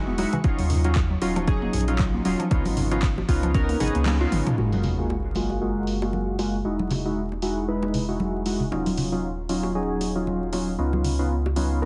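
A swung 116 BPM deep house groove in F# major carries a sunny, relaxed mood, with up-front detuned analog key stabs, a round sine sub bass, tape-warm drum machine claps and hats under a sweeping filter, dry background congas and bongos, an overdriven kick that drops out at 4.1 seconds, a woody FM mallet pluck arpeggiating and a faint silky string machine through the opening, and a sub drop at 4.6 seconds ushering in the F#maj9 to Emaj9 chords, all set in light reverb, a dense limited master and vinyl crackle.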